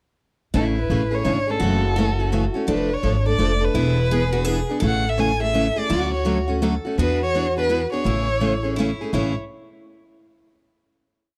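This short, complete piece has the dry, close sound of a small 1970s-style studio room, with the violin, bass and rhythm guitar sitting up front. It is lively, playful acoustic string swing in the jazz manouche style, a waltz in 3/4 at 168 BPM in A major with a swung eighth-note feel. The dark violin carries the motif-based melody in song-like phrases, bowed by a single player with vibrato and expressive portamento. Beneath it, a picked steel-string guitar of concert size plays rhythm on every beat, short and accented on two and three, its warm tone marked by finger squeak. The pizzicato upright bass gives woody, thumpy gut-string roots and fifths with walk-ups. Lower in the mix, a second, brighter and boxier parlour guitar picks a counter-melody touched with slapback echo, and all four parts close together on a final chord from 9.1 seconds.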